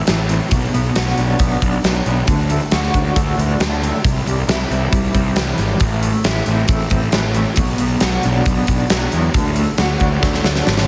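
A huge arena drum kit sits up front in this cathartic, anthemic quiet-loud alternative rock clip, its punchy kick and fat snare ringing in a hall and breaking into a fill at 10.2 seconds. Alongside it, a fuzz-drenched picked bass, also up front, growls with overdrive, while a dark, clean fingered electric guitar with tremolo traces arpeggios through a cycle of A minor, B minor, D and C. Light reverb and a heavily compressed, radio-ready sheen tie the short excerpt together.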